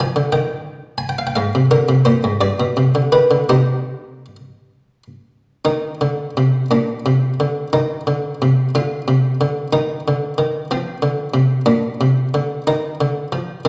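In a 6/8 that bends freely with rubato, this introspective, flowing fragment of a baroque-style suite movement features a solo buff-stop harpsichord. Its muted, lute-like plucked tone sits up front, spanning G2 to Ab5 in a French style. The passage runs through two statements of the same material, moving through harmonies such as Ab6/9, G and C minor, then later Bb, F5 and Eb sus2, all within the resonant tail of a recital hall.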